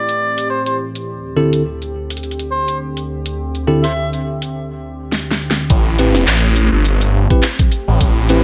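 An overdriven, gritty harmonica carries the melody with tape echo until 4.1 seconds in this funky glitch hop piece at 104 BPM in A minor, over a warbling, nostalgic lo-fi pad with chorus, phaser and sampler grit, huge-snared dubstep drums with metallic hats and handclaps, and bell-like electric piano stabs under a filter sweep from 1.4 seconds, before a break and drum fill lead to a drop at 5.7 seconds where a swirling, thick detuned saw bass and a knocking electronic kick arrive up front.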